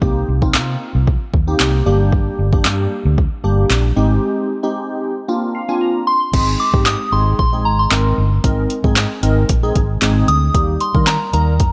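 A soft, pure FM synth bell carries the melody from 6.1 seconds, its mellow tone shimmering with chorus and delay over this euphoric, carefree dance-pop excerpt at 114 BPM in straight 4/4. Glassy, airy digital keys with a detuned sine character, a noise layer and a filter sweep supply sidechain-pumped accompaniment beside a dark, round, punchy muted electric bass, while an overdriven R&B kit with a soft kick, sharp snare, handclaps, hi-hat and crash sits up front with a small-room tone. A break from 4.2 seconds leads into a keys fill at 5.3, and the chords move from Cm7 through Gm, Abmaj7 and Bbadd9 to Ab and Eb under a light reverb.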